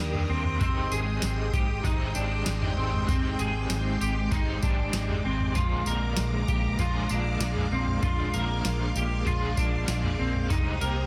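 A straight 4/4 pulse at 97 BPM from a booming analog drum machine, with its deep kick, crisp snare, tambourine and toms, anchors this ethereal, dreamy dream pop excerpt, where a round, foam-muted vintage fingered bass, a bright, twangy clean electric guitar playing arpeggios through chorus and digital delay, a crunchy, double-tracked overdriven guitar with tremolo and chorus, and a lush sawtooth string machine holding sustained chords all move through Ebmaj7, Abmaj7, Bb7 and Cm7 in a light reverb under a dense, heavily limited modern master.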